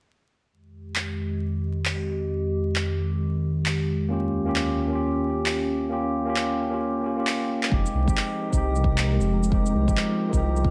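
A warbling, nostalgic tape-like pad pumps with sidechain and opens this ghostly, rainy future garage excerpt, soon joined by up-front handclaps and a shaker, then a clean tine electric piano from 4.1 s over a shift from Fm9 to Eb7; after a drum fill, a deep layered kick and a dark, detuned, rumbling saw bass arrive at 7.7 s, with a very quiet flickering, grainy texture glinting on top, all inside a dreamy, reverb-soaked mix with vinyl crackle.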